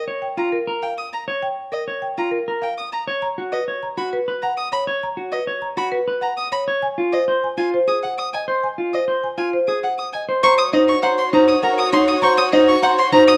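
Hypnotic and urgent, this minimalist classical pattern piece in 3/4 sets a woody marimba melody against a focused, vibrato-rich solo violin and a dark, picked clean electric guitar weaving arpeggios up front, before a smooth chamber violin section enters at 10.4 seconds with sustained chords, all within a dark, moderately reverberant large-studio sound that is cut from a longer work.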